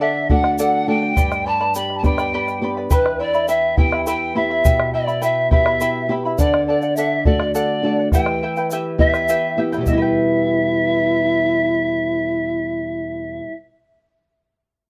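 A dark, warm production in a small room frames this melancholic, wistful Andean folk excerpt in 6/8. An airy, reedy pan flute with vibrato and plate reverb carries the melody up front, while a hollow, mellow quena traces a second line in the background, over a fingerpicked charango with shimmering double strings and a small, fresh-strung nylon-string guitar. A round, dry bombo sits up front with a grainy egg shaker until 10.1 s, after which the flutes and strings carry on alone.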